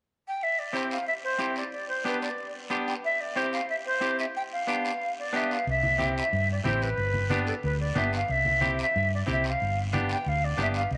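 A moderate plate reverb gives this joyful, danceable cumbia excerpt a spacious sheen, with an airy, expressive jazz flute carrying the melody up front from the start, its crisp, chiffy attack and vibrato set against a raspy guiro and the bright, clean picking of a semi-hollow electric guitar. At 5.7 seconds a dark, round hollow-body bass joins, and ringing, low-tuned congas played with soft hands follow in the background, as the music keeps trading between C and G chords.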